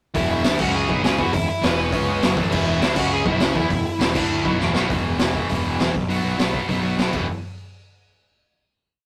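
A bright, scooped distorted guitar riff of driving quarter-note power chords opens this short, energetic and rebellious punk rock piece at 202 BPM in E major, joined at once by a growly fuzz bass in eighth notes that doubles the riff, a gritty, up-front garage drum kit with a boomy kick playing a fast punk groove, and a second compressed distorted guitar sitting in the background. A dark, overdriven lead guitar carries a motif-based melody, partly doubled in octaves, until 4.6 s, when a drum fill leads into the outro. Another fill sets up a final hit at 7.3 s, all captured in a rough rehearsal-room sound with tube saturation and light reverb.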